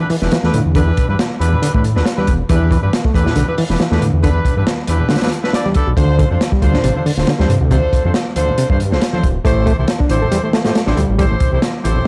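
Swaggering and raw, this short breakbeat cut rides a lightly swung sixteenth-note groove and a chord cycle of Em7, Dm7 and Am7. The crunchy breakbeat drum kit sits up front with a saturated, gritty sound, a tight kick, a medium-tuned snare and hi-hat, and its top end rolled off. Beneath it, a dark detuned saw bass rumbles deep and beating, sustained with a fast attack, while distant congas add very quiet percussion from a large room. An overdriven reed electric piano carries the riff in a barky, reedy tone through a combo amp, with analog delay trailing its notes until about 11.3 seconds. A horn section with light vibrato and a smooth top fires pop-style stabs, also touched by analog delay, and continues until 12.1 seconds. The whole take has a dry, hardware-roughened feel inside a small room ambience.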